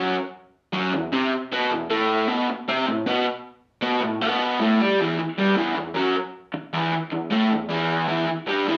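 Raw and swaggering, this short rock excerpt runs at 155 BPM in a straight 4/4 and sits in E minor. A lone electric garage guitar carries it alone from 0.0 to 8.8 seconds, picked and overdriven, with a lo-fi, double-tracked sound placed up front and ranging from E2 to G4. The chords move from E5 to Asus2 at 1.9 seconds, then settle on Em when a new section begins at 5.0 seconds. A moderate studio reverb gives the guitar a little room around it. It is cut from a longer piece, so it feels like a glimpse of a bigger song.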